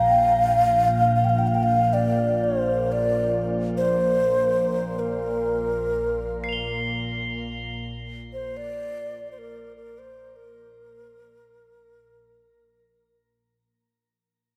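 Spacious and calm, this free-time world meditation piece in Bb major pentatonic floats on a dark, detuned wavetable pad drone that morphs and warbles through a phaser beneath a breathy, mellow bamboo xiao melody with vibrato, shimmer reverb and tape echo. At 6.4 seconds, soft, bell-like crotales join high above with shimmering reverb of their own. A wet cathedral reverb with a 4.5-second decay surrounds the passage, which fades out across its length.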